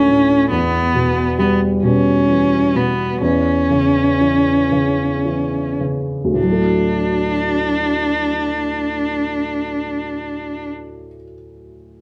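A dark, smooth bowed cello with vibrato sings a heartfelt, romantic pop melody in a straight 6/8 over a mellow, woody upright piano with long sustain, both up front in a moderate room reverb as the band plays live together, easing into a slowdown from 0.5 to 6.4 seconds before the cello drops out at 10.7 seconds in this fragment of a longer piece.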